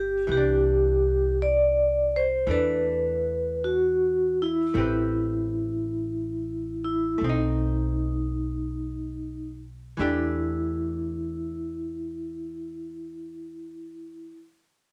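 Ringing, metallic vibraphone with fast motor vibrato sits up front carrying the melody of this smoky, melancholic jazz ballad in E minor, swung at 40-56 BPM and slowing down from 0.3 to 10.0 seconds, while a dark, clean hollow-body archtop guitar picks the accompaniment through chords such as Cadd9, Am9 and B7b9 and a woody, growly pizzicato upright bass anchors the low end, all captured as a cassette home recording in a wet booth and cut from a longer piece.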